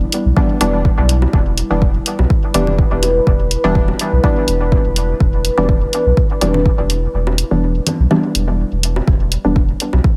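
A tape-warm electronic kick drum anchors this hazy, deep dub techno excerpt and drops out from 7.1 to 9.1 seconds, while a round sine sub bass pumps beneath muted, detuned sawtooth chord stabs steeped in chorus, phaser and dub echo, a moody slow-attack ambient pad sustains an Em7 chord, an up-front electronic hi-hat ticks along, and overdriven bongos and congas echo in the background, until a filter sweep runs across the stab at 9.1 seconds.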